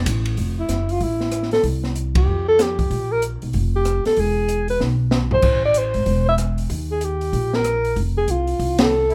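A light reverb gives this short cut from a longer small-group swing and bop performance a close, small-room sound, with the bass, drums and saxophone all up front. The mood is playful and warm, the swing feel bouncing along in four. A woody pizzicato upright bass anchors the low end from the start, while an acoustic kit with dark cymbals, a medium-tuned snare and a boomy kick uses ride, hi-hat, rim clicks, crash and toms, adding a drum fill at 4.8 seconds. Leading the tune, a mellow alto saxophone solos with vibrato, scooped notes and a smooth top, over changes that move through chords such as Fmaj7, Bb5, Am and Eb before settling on F. The band hits an accent at 8.8 seconds, and at 9.1 seconds a distant, raspy, growling trumpet sounds a single gritty, soft-attack note far in the background.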